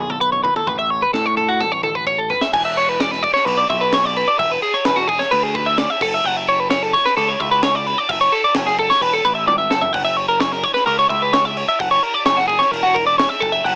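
A straight 4/4 pulse at 130 BPM drives this playful, wistful math rock and midwest emo fragment, where an up-front, clean, compressed twelve-string electric guitar spins arpeggios through cassette-tape grain over a growling, bright, overdriven picked bass and a crisp fusion kit with a high-tuned snare and punchy kick in a small, pumping room, with drum fills at 1.6 and 9.5 seconds and chords moving from B7sus2 and A to E7, F#m7 and F#7, heard through light reverb and a homemade cassette, small-speaker sound.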